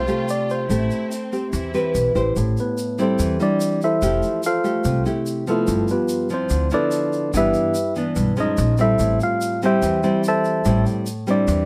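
Wistful and melancholic, this bossa nova fragment in a straight 4/4 feel is cut from a longer piece. A bright, clean tine electric piano carries the melody up front, and a lush bowed violin section with vibrato adds a soft second line before dropping away at 2.1 seconds. From 2.4 seconds the electric piano takes a solo over chords that move from Am7 through Fmaj9, G13 and a passing Bbm7 before settling back on Am7. Underneath, a fingerpicked nylon-string guitar with old strings gives a classical, woody accompaniment close to the listener. A pizzicato upright bass adds a thumpy low end, while a grainy tube shaker sits quietly in the background. Moderate studio reverb gives the ensemble a gentle sense of space.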